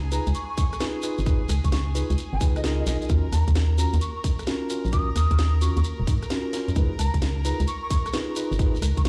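Heard as if through a big sound system in a bare room, with a large studio reverb around it, this soulful, moody two-step UK garage excerpt swings its 16ths at 131 BPM in 4/4, moving from Db7 to Ebm7 and back to Db7. A dark, up-front, organ-like FM bass with a fast, decaying attack anchors the groove. A produced garage kit of bright hats, rim clicks and a cracking snare plays from the start with a grainy, close shekere, and a tight, layered electronic kick joins them at 0.6 seconds. Over them an airy jazz flute with vibrato and chiff carries the melody through tape echo, mellow tine electric piano stabs also pass through tape echo, and a bright chamber violin section holds earthy bowed chords that pump under sidechain.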